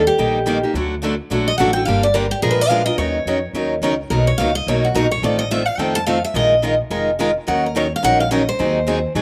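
Recorded outdoors with little reverb, this dry clip of acoustic string swing in the jazz manouche style moves at a brisk 214 BPM in Eb minor, with a swung eighth-note feel and a virtuosic yet bittersweet mood. A bright concert steel-string guitar with fresh strings carries the picked second line up front, and a steel-string guitar solo runs through the whole clip, from 0.0 to 9.2 seconds. Two picked acoustic guitars supply the accompaniment. One is a boxy parlour instrument with audible finger squeak. The other is a concert guitar with fresh strings sitting in the background, entering at 0.2 seconds. Underneath, a pizzicato upright bass with gut strings gives a woody, dark, thumpy foundation. The harmony passes through chords such as Ebm7, Bmaj7, F7/A and Bb7sus4 across two repeated sections, the second beginning at 3.0 seconds.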